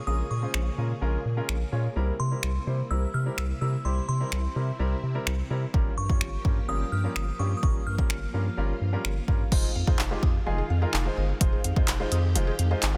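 Energetic yet bittersweet, this dance-pop excerpt moves at 127 BPM in a straight 4/4 in F minor, cut from a longer piece. A glassy, crystalline synth bell carries the melody high up from the start, warbling through chorus, tremolo and dub echo until it stops at 8.8 seconds, while a lush vintage string machine holds sustained chords beneath. A polished grand piano plays accompaniment and a round, deep analog bass sits up front, both pumping with the sidechain alongside the strings, and a punchy, tape-warm analog drum machine drives the groove with kick, hi-hat, handclaps, finger snaps and crash cymbal, its snare softly clipped. At 9.5 seconds the harmony settles onto Fm7 as a woody, mallet-like synth pluck enters in the background with arpeggios, treated with chorus and dub echo. Light reverb surrounds a dense, heavily limited modern master, and the chords move from Bbm7 through C7 and Gm7b5 before that arrival.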